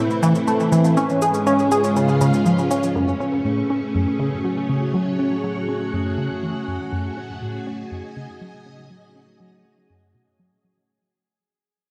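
A dark, warm production bathed in a moderate plate reverb opens this hypnotic, expansive stretch of sequencer-driven space music in F# dorian at 121 BPM, cut from a longer piece. A tight, nasal sequenced synth riff with detuned sawtooth and pulse-wave bite, gritty 12-bit sampler texture and delay sits up front throughout, beside lush, mellow string-machine chords with a sub octave and ensemble chorus, while overdriven electronic cabasa and woodblock with delay tick through the opening seconds until 2.9 s. From 3.3 s a bubbling, resonant stepped-filter texture drifts in on a single high note, as a filter sweep moves over the synth arpeggio and the whole piece fades out from 3.0 s to the end at 10.9 s.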